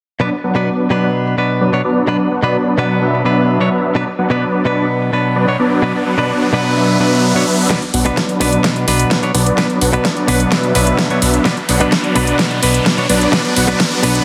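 Emotional and anthemic, this festival progressive house track at 128 BPM in B minor opens on a twangy, clean electric guitar and lush, detuned supersaw chords, both pumping to the sidechain with delay, before an electronic riser enters at 5.0 seconds ahead of a build-up from 7.7 seconds, where the supersaws take a filter sweep and an overdriven big-room kit with a huge snare and metallic hats plays a fill over a punchy kick in the background, joined at 7.9 seconds by a fat, saturated analog bass on B, all set in a hall reverb under a dense, heavily limited master.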